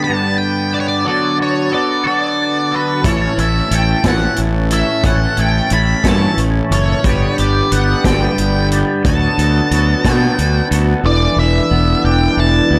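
Kaleidoscopic and hypnotic, this psychedelic rock excerpt rolls along at 60 BPM in a straight 6/8 in A mixolydian, with a dark octave-fuzz lead guitar carrying the melody through wah, distortion and analog delay over reedy, overdriven combo organ chords and a twangy, bright, double-tracked electric guitar riff spun through a rotary speaker. At 3.0 seconds a growly, up-front fuzz bass and a punchy vintage drum kit with a mid-forward, rolled-off top join in, the drums dropping out at 10.9 seconds as the chords move from G and D6 through A toward a closing E7sus4. Light reverb places the parts in a modest room.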